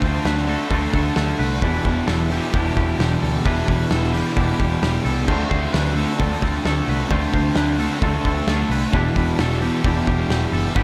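A straight 4/4 pulse at 131 BPM drives this melancholic, dreamy shoegaze and dream pop excerpt, with a loose indie drum kit sitting up front, its punchy kick, medium-tuned snare and dark cymbals pumping in the room, while a round, foam-muted picked bass anchors the low end. Two twangy clean guitars share the space, one fingering arpeggios through subtle chorus and tape echo, the other a bright picked riff bathed in reverse reverb, as an overdriven double-tracked guitar and a thick fuzz guitar with lush chorus churn riffs in the background. The whole mix is soaked in plate reverb over small room ambience, drifting between Dm7 and Em7 across its 10.8 seconds.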